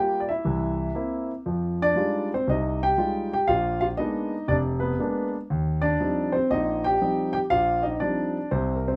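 Set in a moderate studio reverb, this playful, relaxed solo jazz passage, cut from a longer piece, features an intimate, up-front concert grand piano with deep bass, long sustain and audible action noise, swinging in 4/4 through C7, Fm9, Bb7b9 and Eb69 over its 9 seconds.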